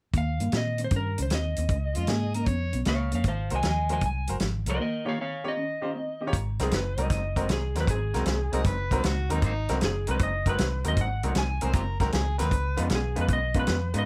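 Electric blues shuffle at 155 BPM with a laid-back, swaggering swing, settling into Ab mixolydian at 6.3 seconds after a break. A twangy, slightly broken-up guitar through a small old amp plays the riff over round, punchy muted bass and a tight, mid-forward soul drum kit, while a dark, compressed slide guitar carries the melody up front. A gritty overdriven harmonica with scooped notes and tongue slaps adds a second line at 2.0 and again from 8.5 seconds, and a bright, brilliant grand piano accompanies from 3.5 seconds under light reverb.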